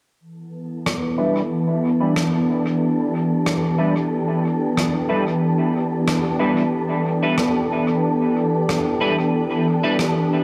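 Deep and spacious, this echo-heavy ambient dub excerpt opens on a soft, organ-like pad holding a sustained Em7 chord with ensemble chorus and a filter sweep, joined by a breathy, wind-like tuned noise texture, a rim click carrying dub echo, and twangy, slightly broken-up electric guitar stabs from 1.2 seconds, bright yet filtered and chorused, all set in moderate spring reverb.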